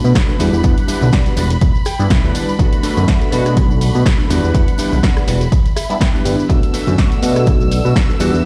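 A saturated, fat analog bass and an up-front electronic kick drive this groovy, funky filtered disco house cut at 123 BPM in E minor, joined by a detuned, chorused polysynth comp with phaser, a dark, clean fingered electric guitar riff with 12-bit sampler grit and fills at 1.6 and 5.5 seconds, a smooth bowed string section holding high chords, punchy drum machine hats, rim and snare, ringing tambourine and congas in the background, and a very quiet sub drop at the start, as Em7 and Bm7 alternate under sidechain pumping.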